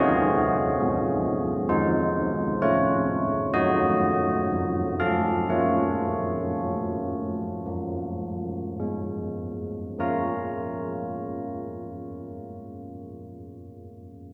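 Old church bells ring out alone from the first moment, carrying a solemn, wintry tune in B-flat minor, cut from a longer classical piece written for bells. Their bronze tone is clangorous and mellow at once, softened by a padded clapper, with a minor-third overtone and a beating shimmer that sits mid-forward and up front. The pace sits between 50 and 69 BPM in a straight 4/4 and gradually slows through the opening phrase until 10.0 seconds, where a second section begins. The harmony moves from Cdim to F7, pauses briefly on unharmonized ringing, then returns to F7 and settles on Bb minor. A wet church reverb with a long 2.8-second decay surrounds the bells until they fall silent at 13.8 seconds.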